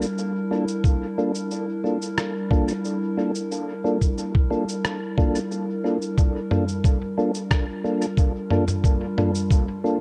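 The rhythm sits at 90 BPM in a straight 4/4, with a lo-fi sampler-style kit of rim click, shaker and toms running from the start to 9.7 seconds, muffled and pitched down in a small room with dub echo trailing behind it. An electronic kick drum joins at 0.8 seconds, a thumpy, compressed hit placed up front and the loudest part of the mix. This ambient dub fragment, cut from a longer piece, rests on Gm7 in G dorian and feels meditative and hazy. A warbling, tape-like pad holds sustained chords throughout, its slow attack and long release giving it a nostalgic, mellow glow through chorus and built-in reverb. Alongside it, a percussive tonewheel organ plays soft, flute-like stabs, coloured by chorus vibrato, a slow rotary speaker, 12-bit sampler grit and dub echo. The whole mix leans heavily on echo with only a light reverb, and it shifts into a new section at 6.2 seconds.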